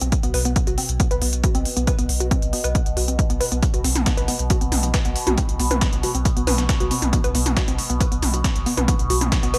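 A cut from a longer piece of intense, driving peak-time techno at 137 BPM in 4/4, opening on a B5 chord as a woody, wave-folded pluck riff with tube saturation, chorus, delay and a dark filter sweep rides over a thick, saturated sub bass, a resonant drone of moving overtones with phaser and built-in reverb, and a smooth-hatted techno kit of hi-hats and toms in gated reverb, these parts pumping to the sidechain, while a punchy, tape-warm kick sits up front from 0.1 seconds and a gritty, pitched-up breakbeat sampler kit of high-passed hi-hats and a medium-tuned snare joins at 3.6 seconds, all within a bright 1980s-style digital production bathed in light reverb.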